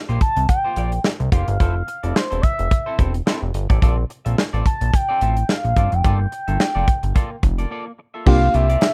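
A bright, clean semi-hollow electric guitar riff, fat sawtooth analog bass and a punchy modern studio drum kit open this danceable, late-night early-eighties boogie funk at 108 BPM with a light sixteenth-note swing, joined at 0.2 s by an expressive, warbling portamento lead with chorus and slapback echo over chords moving from C7sus4 through Fmaj7, Bbmaj9 and Gm9, before a break at 7.7 s and the arrival at 8.3 s of a dark FM electric piano with tremolo and a barely audible, lush string section, in a dry, rough home demo mix.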